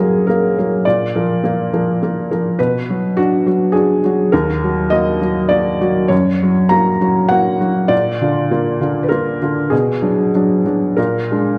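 A felt-muted upright piano plays alone in this reflective, melancholic neoclassical minimalist excerpt, its soft, boxy tone sitting up front with audible action noise that makes it feel intimate. Moving in 3/4 at 101 BPM with uneven, rubato beats, it ranges from Eb2 to Bb5 through a chord cycle of Gb, Bb, Bm and Ebm, closing on Bb7 at 11.0 seconds. A wet recital hall reverb and a dark production surround the piano across its 11.6 seconds.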